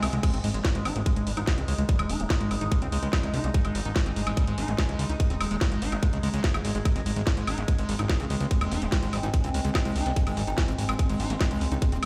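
Heard through a big sound system in a bare stone room, this alien, intense psychedelic trance excerpt drops at 0.2 s, when a tight, up-front electronic kick joins a fat, detuned sawtooth analog bass, a squelchy, resonant square-wave acid riff with chorus and dub echo, an evolving drone of moving overtones pumping under sidechain, and a drum-and-bass kit of cracking snare, metallic hi-hats, crash cymbal and woodblock.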